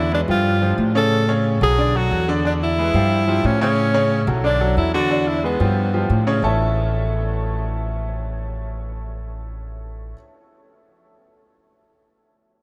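A clear, punchy tenor saxophone with light vibrato and analog delay carries a joyful, sunny salsa melody up front, over a brilliant, intimate concert grand piano with audible action noise and a woody, dark pizzicato upright bass, all soaked in a huge, dreamy reverb, until the saxophone stops at 6.1 seconds and the piano and bass play on alone to the end of this short excerpt.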